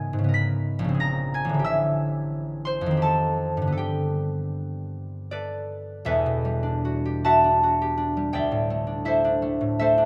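A concert harp plays alone throughout this short classical passage, cut from a longer piece, its fingerpicked strings ringing up front with an acoustic warmth. The mood is graceful and serene, moving in a flexible, rubato 3/4 at roughly 71 to 93 BPM. The harp spans a broad register from E1 up to Cb7, sounding through rich extended chords such as Abm11, Bbm9, Am7, F9 and Gadd9 in the opening stretch. At 6.1 seconds the music settles into E minor, opening a new section on Em11 before moving to D9sus4 at 8.4 seconds. Close, detailed microphones and a touch of light reverb keep each plucked note clear and intimate until the passage closes at 10.1 seconds.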